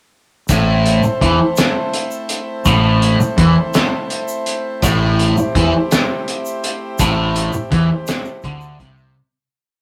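At 0.5 s the whole band arrives at once: a dark, double-tracked fuzz guitar plays a single-note riff up front, with a round, overdriven fingered bass doubling it in driving eighth notes below. This short psychedelic rock piece rolls in a steady 6/8 and has a trippy, mysterious mood, sitting on a single A minor chord. A cloth-damped drum kit gives a muffled, thuddy groove on hi-hat, tight kick and fat snare, its top end rolled off and its sound saturated and gritty. Behind them a reedy pedal harmonium breathes mellow sustained chords, while a grainy egg shaker keeps an evenly spread pattern in the background. The rough rehearsal-room recording carries a moderate studio reverb, and the riff fades out from 7.0 s until the piece ends at 9.2 s.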